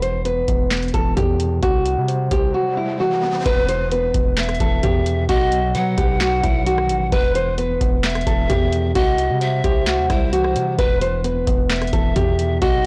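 Dark and brooding, this half-time trap beat is led by an up-front, fingerpicked nylon-string guitar with audible finger squeak, filtered and touched with delay, over a mellow tine electric piano, a punchy, saturated 808-style bass and a booming, dry analog drum machine with a deep kick, crisp snare, metallic hats, handclaps and rim clicks. A short electronic riser at 2.4 seconds leads into the second section, where a breathy pan flute with vibrato and a chiffy attack enters at 3.5 seconds as a delayed second line. The whole mix sits in a digital ambience and sounds blown-out and overdriven, cut from a longer piece.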